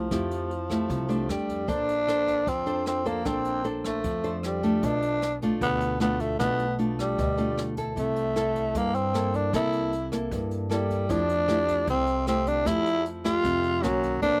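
Breezy and relaxed, this bossa nova fragment moves at 153 BPM in F major and runs about 14 seconds, cut from a longer piece. A growling tenor saxophone leads the melody up front, its breathy subtone and raspy grit sitting under a smooth top, with vibrato, soft attacks and scooped notes in a jazz style. A small, fingerpicked nylon-string guitar supplies the chords, moving through lush voicings such as Fmaj9, Bbmaj9, G9/B and C6 before landing on Bmaj9 at 13.8 seconds. Beneath it, a pizzicato upright bass with steel strings adds a woody, growly foundation. A brushed drum kit keeps time quietly with hi-hat, rim click and a boomy kick. The sound is dry and close, with little reverb and an outdoor setting that carries none of a room's ambience.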